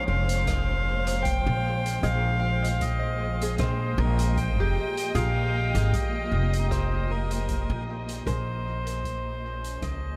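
A reedy, breathy melodica melody with dub echo opens this hazy, meditative ambient dub excerpt at 77 BPM in Bb dorian, over veiled con sordino strings holding dark sustained chords and a fingerpicked Celtic harp ringing arpeggios through tape echo in the background, joined at once by a woody, thumpy pizzicato upright bass up front, a distant, roomy soft-mallet kit of hi-hat and rim click with dub echo, and a deep analog electronic kick, while a very quiet filtered, detuned sawtooth chord stab with phaser enters at 2.0 s as the harmony moves from Bbm7 to Fm7, before the fade-out from 6.2 s.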